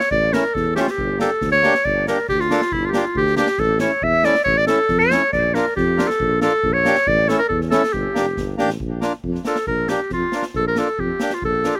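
A festive, soulful klezmer excerpt opens at 0.0 with a bright clarinet playing the melody up front in a classical style, carried by a short slapback echo, while a street-band drum kit of kick and snare plays along. The drums sound acoustic, airy and polished, with a medium-tuned snare and a boomy kick, and they play a fill around 1.4 seconds before the tune settles into its main strain. Just after the start, a breathy tuba takes the bass line with a mellow tone, light vibrato, scooped notes and a close-miked jazz feel. A reedy, hollow accordion fills in the accompaniment, also touched with slapback echo, over a straight two-beat pulse that moves mostly between A and G minor with turns to B flat. Another drum fill leads into a new section at 8.8 seconds, and the whole piece sounds dry, as if played outdoors.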